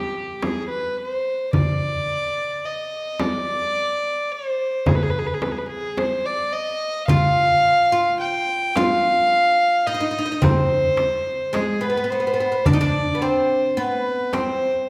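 A straight 10/8 pulse from a crisp, metal-shelled darbuka and a soft-handed frame drum carries this longing, soulful Arabic maqam ensemble excerpt, where a single dark, reedy gut-string violin with light vibrato bows the melody up front from the opening and a woody, fretless oud joins at 7.1 seconds with a plectrum-plucked second line, the whole heard in a reverberant recital hall.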